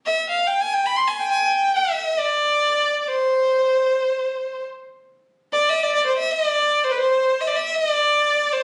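Passionate and stately, this short excerpt, cut from a longer piece in the Turkish makam ensemble tradition, unfolds in free time with tuning set to A4 = 442 Hz. A single bowed violin carries the whole passage as a solo, sounding from 0.1 s to 8.6 s in a range from B4 to C6. Its tone is clear and focused, with vibrato colouring the line, and it sits up front in the mix even as it carries a slightly distant quality. The recording was captured on a phone in the room and given moderate studio reverb and compression, lending the violin a modest halo of space. The result is a stately, poised fragment that lets one player's voice stand alone.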